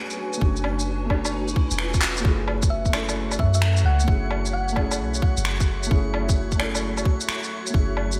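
Bright 1980s-style digital production dusted with vinyl crackle and a lush hall reverb frames this ghostly, rainy future garage excerpt at 131 BPM in a swung 4/4 and F# minor, where a background riser opens over a thick-felt muted upright piano, a cloudy granular pad, and a glassy drifting harmonics texture, joined almost at once by layered electronic shaker, woodblock, finger snaps and handclaps under gated reverb, before a tight, tape-warm electronic kick and a soft, round 808-style bass arrive at 0.4 seconds, and a tine-like thumb-piano-style synth pluck carries a brief melody from 2.7 to 5.0 seconds.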